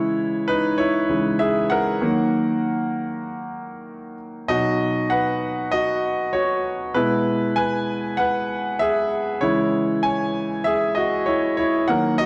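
Pop solo piano excerpt at 97 BPM, uplifting and anthemic, with a clear, polished grand piano playing up front from B2 to G#5 through C#m, D#m, B and E/B chords before returning to C#m, set in a dark production with moderate scoring-stage reverb.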